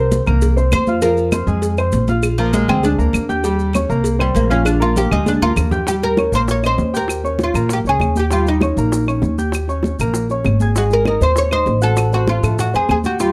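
A bright, plectrum-plucked oud opens this sunny, sophisticated Afro-Cuban jazz excerpt at a brisk 197 BPM in Eb mixolydian, soloing up front over a warm grand piano and a growly, thumpy pizzicato upright bass, with congas, cowbell and bongos, claves and maracas joining a moment later. A drum fill from 5.3 s leads into the second section at 5.9 s, where the harmony moves through Eb7, Ab7 and Adim7. Close, dry microphones keep the woody claves and grainy maracas crisp, while the high-tuned congas and the round, low-tuned bongos stay in the background.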